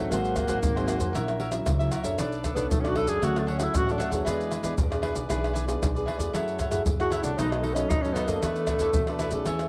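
Lively and joyful, this short samba and choro excerpt features a breathy, mellow tenor saxophone soloing throughout with vibrato, scooped notes and a soft attack in a jazz style. Crisp picked cavaquinho and a classical nylon-string guitar, thumb-plucked with audible finger squeak, accompany it, and all three carry a cassette-tape character. A woody, thumpy gut-string upright bass played pizzicato and an up-front percussion section of maracas, tight surdo, pandeiro and tamborim played with hard hands complete the band, set in a small room with moderate spring reverb on a home cassette recording.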